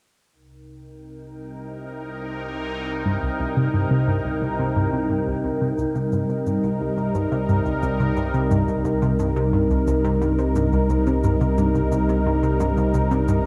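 A bright, airy resonant pad sits up front in this hypnotic, cosmic piece of sequencer-driven space music, fading in from 0.3 seconds on a sustained Cm7 chord with chorus while a breathy, wind-like tuned noise texture drifts in the background. A tight, nasal sequenced synth riff with chorus and tape echo enters at 3.1 seconds. From 5.8 seconds a round, deep analog bass arrives and a dry shaker and woodblock fade in far back, all within a dark production bathed in huge, wet reverb, cut from a longer piece.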